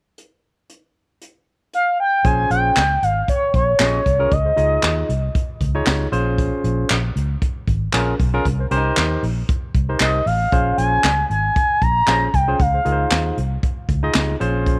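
A lightly swung 116 BPM groove in 4/4 opens this late-night, funky slice of early-eighties boogie funk in Bb dorian, with a brushed drum kit of punchy kick, high-tuned snare, hi-hat and handclaps starting at 0.2 seconds. A smooth, soft-attack synth lead with chorus and vibrato sings sustained phrases between Db5 and Bb5 in two passages, the first starting at 1.7 seconds. A round, foam-muted fingered bass and a barky, lightly overdriven tine electric piano join at 2.2 seconds over Bbm7, Dbmaj9 and Cm7 chords, all set in a small, lightly reverberant room.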